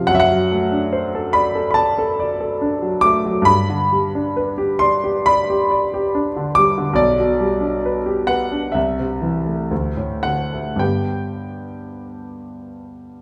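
A clear concert grand piano sits up front in a wet recital-hall reverb, its deep bass and short sustain heard naturally in a church or concert-hall space. This serene, dreamy romantic nocturne for solo piano moves in G major at a rubato 54-73 BPM in 4/4, spanning B1 to D6 as it settles from D7/F# onto G at 3.5 seconds and returns home to G at 10.8 seconds. The 13.2-second excerpt is cut from a longer piece.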